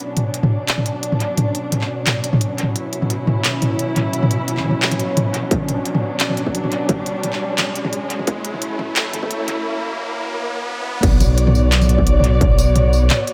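A heavy, spacious mix drenched in echo-chamber reverb frames this half-time drum and bass excerpt at 174 BPM in B minor, where veiled, muted strings hold lush sustained chords that pump against the beat while an electronic riser and a crisp industrial kit of hats, claps, tambourine, toms and crash with analog delay drive the build-up, joined by a distorted kick entering at 5.5 s, before a dark, rumbling, detuned saw bass arrives at the drop at 11.0 s.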